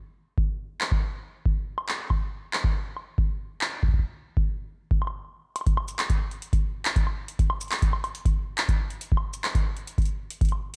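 A straight 4/4 pulse drives this intricate, playful IDM excerpt, where a deep, up-front analog kick enters at 0.4 seconds and a booming drum machine soon adds metallic hi-hats, handclaps, shaker and woodblock treated with tape echo, all halting briefly at 5.1 seconds before the next section resumes in a dark, dry production with a large-room character.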